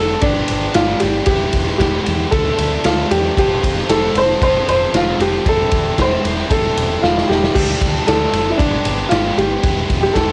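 A straight 4/4 pulse drives this cool, moody indie rock fragment, cut from a longer piece. A raw garage drum kit enters at 0.2 seconds on kick, snare, ride and crash, its punchy kick and medium-tuned snare sitting up front with a rolled-off top and a bright stone-room ring. A woody upright piano carries the melody from the start, while a biting, double-tracked overdriven guitar plays a picked riff beneath it; the piano, guitar and kit all carry a cassette-tape color. A deep, round dub bass, picked and heard both direct and amped, anchors the low end. From 6.5 seconds a very quiet FM synth chime adds a second line with an inharmonic, ringing tone and a long release under ensemble chorus, and the drums play a fill at 7.0 seconds as the chords move through G, Em, Dm, F and C6/E before circling back. Light reverb and the homespun grain of a home cassette recording frame the performance.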